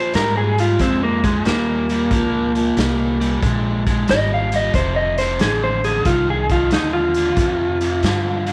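A slightly broken-up, lo-fi electric guitar through a small old amp carries the melody up front in this swaggering, rollicking electric blues shuffle at 91 BPM, backed by a dark, overdriven guitar riff, woody pizzicato upright bass and a raw garage drum kit with a punchy kick in a bright stone room, all under light reverb as the chords move from Bb5 to Bbm7 and F7 in an excerpt cut from a longer piece.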